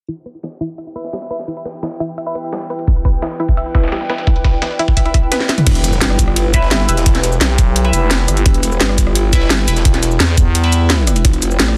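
Dark technical drum and bass with a tense, mechanical mood, cut from a longer piece and built on a straight four-beat pulse. It opens on a round, sawtooth-and-square analog pluck spinning arpeggios through chorus and digital delay under a filter sweep, joined by a background breakbeat sampler-style kit with a gritty, high-tuned snare and a cracking, up-front drum and bass kit with bright hats, cabasa, rim clicks and toms. A moody, detuned analog pad and a warbling, lo-fi tape-like pad with built-in reverb fade in behind a nasal, band-passed chord stab run through phaser and delay, while a knocking electronic kick arrives at 2.9 seconds. After a drum fill, the drop lands at 5.7 seconds with a very quiet electronic impact and an aggressive, saturated growl bass that wobbles through a formant filter, pumping against the sidechain. A thick FM growl bass stacks on top from 6.9 seconds, and the harmony shifts from E minor to F near the end. 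The dense, heavily limited master carries a digital ambience and a low-pass filter, with the kick and the drum and bass kit sounding re-recorded in a small room.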